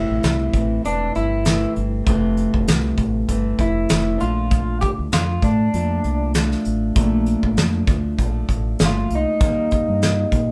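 A slightly broken-up, lo-fi electric guitar through a small old amp carries the melody up front in this dreamy, laid-back indie and bedroom pop excerpt at 98 BPM with a light 16th-note swing, over a woody, fingerpicked plugged-in steel-string acoustic guitar with a warbly pitch drift, a dark, round dub bass entering at 0.1 s, and a soft brush kit with a fat snare and punchy kick from 0.2 s, as the band plays live in a wet small room over Fmaj7, Bbmaj7 and Eb.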